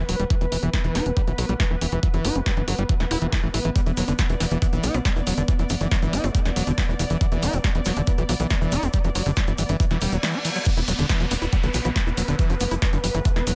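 A pulsing, detuned gated texture holding sustained chords opens this hypnotic psychedelic trance excerpt at 139 BPM in E minor, together with a screaming, squelchy distorted acid riff with chorus and dub echo and a tight sawtooth sequencer bass up front; an overdriven, knocking electronic kick and a techno kit of punchy snare, crash and hi-hat drive the groove, a very quiet, juicy blip pluck warbles through a phaser, a grainy acoustic tube shaker enters in the background at 3.8 s, and background zap, reverse cymbal and downlifter effects appear, with the reverse cymbal leading into the drop at 10.7 s.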